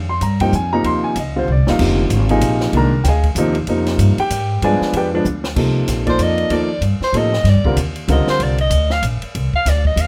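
A lightly reverberant, close and detailed recording captures this cool, hypnotic modal jazz piece in 3/4, swung and cut from a longer piece. The upright bass sits up front with a woody, growly pizzicato tone on steel strings, while the grand piano sounds intimate and natural, its action noise audible as it moves through chords such as Fm9, G7b9 and Cm11 before dropping out at 8.6 seconds. The compact cocktail drum kit plays dry and lower in the mix, with dark cymbals, a high-tuned snare and a tight kick, adding two short fills along the way. At 6.1 seconds a warm soprano saxophone enters for a solo, jazz-styled, with light vibrato and scooped notes, its roomy, distant character still heard up front. The bass, drums and saxophone carry on together to the cut at 10.1 seconds.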